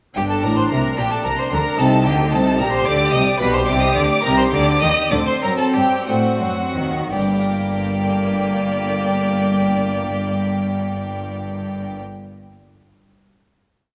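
Heard in a wet recital hall with a long, resonant decay, this short, complete baroque-style concerto movement in G minor unfolds in a stormy, dramatic 6/8 at a slow, dotted-quarter pulse. A rich chamber violin section carries the melody, joined by a single focused solo violin that doubles the tune at the octave and in thirds. A distant, clear second violin section doubles the tune in unison and at the octave, while a lush studio viola section fills the middle with smooth, sustained chords and chords in the rhythm of the tune. Beneath them, a symphonic cello section supplies a walking, sustained bass with a smooth top, doubled by an expressive double bass section, and a round, warm French-style harpsichord plucks bass notes and chords on the beats from the background. The ritornello moves through minor and dominant-seventh harmonies, slowing down from 2.6 seconds, and settles at 7.1 seconds onto a held G minor final chord, with the harpsichord ringing until 12.2 seconds.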